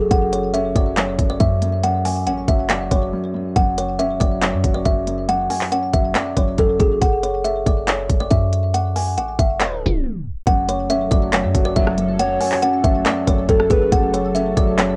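A cassette sheen and a small-room ambience give this dark, melancholic trap excerpt the feel of a home tape recording, moving at 139 BPM in a half-time 4/4 groove in F# minor. Up front, a woody, close-miked kalimba carries the melody with a ringing thumbnail pluck, softened by a low-pass filter and trailed by tape echo, while a dark, vintage grand piano with short sustain plays low accompaniment beneath it. A clean, boomy 808-style sine bass decays under the trap kit, whose hard-clipped kick, crisp hats, handclaps and rim clicks sit prominently in the mix. The groove drops out for a brief break at 3.1 s, and a tape stop at 9.6 s drags the music to a halt before it resumes. From 10.5 s, a detuned sawtooth pad with a filter swell and chorus spreads in the background as the piano returns. Near the end, a mellow classical-style brass section punches out a short stab, followed by a soft, square-wave clarinet-like synth lead with vibrato and tape echo adding a brief second line.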